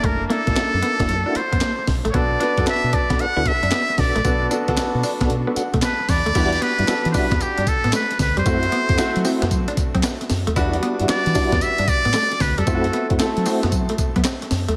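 R&B in the new jack swing style, this bouncy, slick passage rides a swung sixteenth-note groove and is cut from a longer piece. A muted trumpet carries the melody up front, buzzy and breathy with a soft attack and jazz-style vibrato, close and intimate as if whispered, with tape echo trailing it until it drops out at 13.1 seconds. Underneath, a clear, polished baby grand piano plays accompaniment with slapback echo and adds a fill at 5.3 seconds, while a twangy, compressed clean electric guitar riff sits in the background with subtle chorus. A tonewheel organ enters at 0.5 seconds with lightly overdriven stabs, key click, chorus vibrato and a slow rotary speaker, set back in the mix with tape and slapback echo. The foundation is a round, punchy fingered bass, dark and foam-muted, and a gritty, pitched-up sampler-style breakbeat kit with thumpy kick, medium-tuned snare, handclaps, tambourine, hi-hat and crash, re-recorded in a small room and pushed forward. 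The harmony moves through colors such as F#7alt, Em9 and F#m7b5, and a lush hall reverb gives the recording a big arena sound.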